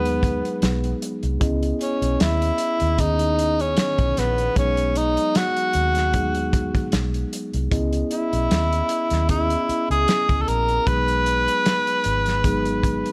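A breathy, whispered tenor saxophone carries the melody up front over mellow tine electric piano, a dark, round, foam-muted fingered bass and a gritty, saturated soul drum kit with a tight kick and pumping room sound in this bittersweet, cinematic 1970s-style soul passage in C# minor at 76 BPM, gently swung and moving between B6 and C#m9 chords in light reverb.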